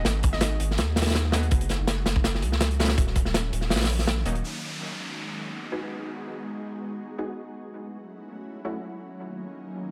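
Frenetic yet atmospheric, this drum and bass and jungle excerpt opens on a drop where a crunchy, dark breakbeat kit with a punchy kick and rolled-off top drives up front beside a deep, round dub sub bass, while an ethereal, detuned pad holds sustained chords under ensemble chorus, reverb and 12-bit sampler grit. A hollow square pluck flickers briefly with dub echo and tape character, and from 1.3 s a bold, layered orchestra-hit-like synth stab sits in the background with reverb and echo, gaining a filter sweep from 4.4 s. The kick drops out at 3.7 s before drums and bass stop at 4.4 s, leaving the pad, stabs and an electronic downlifter to carry the airy second half.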